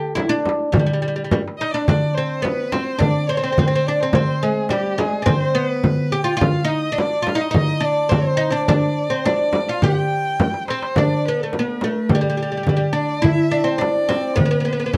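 A straight 4/4 groove from a crisp, high, metal-shell darbuka and a close, dry frame drum, both struck with hard hands, drives this passionate, festive Arabic maqam ensemble piece, cut from a longer work. Up front, a woody, fretless oud plucked with a plectrum on double strings carries the melody, and at 1.6 seconds a single bowed violin joins with a smooth, rich second line full of vibrato. Drum fills mark the turns at 1.3 and 10.4 seconds, and the dark, warm production sits in a moderate studio reverb.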